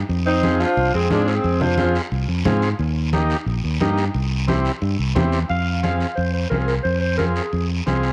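Cumbia at 177 BPM in F dorian, passionate and danceable, built on a dark, punchy fingered electric bass up front, ringing low-tuned congas in the background and a raspy guiro, with a warm saxophone section carrying the melody through tape echo until 2.0 seconds alongside a breathy, scooped clarinet, a buzzy vintage combo organ accompanying throughout, and the clarinet returning for a solo at 5.5 seconds, all in a cassette home recording with spring reverb and small-room ambience.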